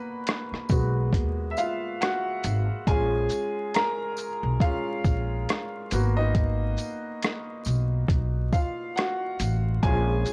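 A brilliant, woody upright piano with long sustain and cassette-tape coloring opens this hazy, reflective lo-fi hip hop piece in Bb phrygian at 69 BPM, playing solo over Abm7 and Bbm7 chords. At 0.3 seconds a muffled, compressed sampler-style kit enters with overdriven grit, carrying a thumpy kick, hi-hat, rim click and shaker on a swung 16th-note feel. It is soon joined by a growly pizzicato upright bass with steel strings and a jingly tambourine in the background, while the dry, gritty mix carries studio reverb, transformer saturation and vinyl crackle.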